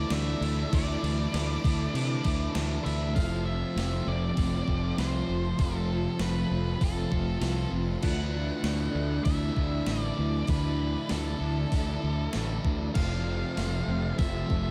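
A round, fuzz-laden fingered bass sits up front in this wistful, blissful shoegaze and dream pop excerpt at 98 BPM, joined from 0.1 s by a thumpy, overdriven 80s drum machine whose gated-reverb snare sounds re-recorded in a small room. Two picked, overdriven guitars share the riff, one in the background with reverse reverb and a hollow-body one soaked in lush chorus, while a dark octave-fuzz lead carries the melody through distortion and delay and a very quiet, twangy clean guitar recorded direct picks arpeggios. A cloudy, detuned granular pad holds sustained chords in the background as the harmony moves between Dsus2 and F under light digital ambience.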